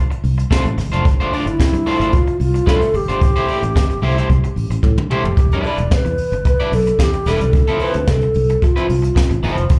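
Disco with a danceable, glamorous mood, heard as a live gig through the venue's PA with club reverb, cut from a longer piece. A brushed jazz kit with a high-tuned snare and boomy kick sits up front beside a dark, round, foam-muted fingered bass, while a twangy, slightly broken-up picked electric guitar accompanies with plate reverb and slapback echo. A breathy, hollow alto flute with a crisp attack carries the melody from 1.3 seconds, and a drum fill at 4.8 seconds leads into the second section.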